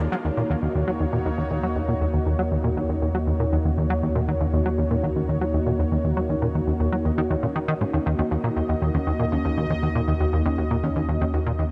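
A punchy, funky analog bass riff with delay sits up front in this hypnotic, expansive stretch of sequencer-driven ambient space music, moving at 119 BPM in Eb minor over a held Ebm7 chord. An evolving, detuned pad with chorus sustains resonant chords above a deep, round sub bass, while a very quiet, soft pluck traces dark arpeggios. Cut from a longer piece, the whole passage is bathed in a huge ambient reverb and cassette-tape coloring, fading out from 10.6 seconds.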